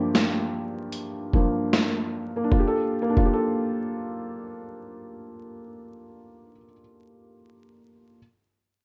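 A felt-muted upright piano opens this reflective, hazy lo-fi hip hop excerpt in G minor at 76 BPM, with a 16th-note swing in 4/4. Its tone is soft, mellow and intimate, the thin felt and a low-pass filter dulling its edges while plate reverb adds a gentle halo; it sits up front and spans from G2 to G5. The harmony rests on Gm7 before moving to Gm9 at 2.5 seconds. A boom bap sampler-style drum kit of hi-hat, kick and high-tuned snare plays until 3.3 seconds, compressed, pitched down and gritty, with a thumpy kick and the character of being re-recorded in a large room, also placed up front. The piano carries on alone after the drums stop, heard through a moderate small room and a rough home demo mix flecked with vinyl crackle.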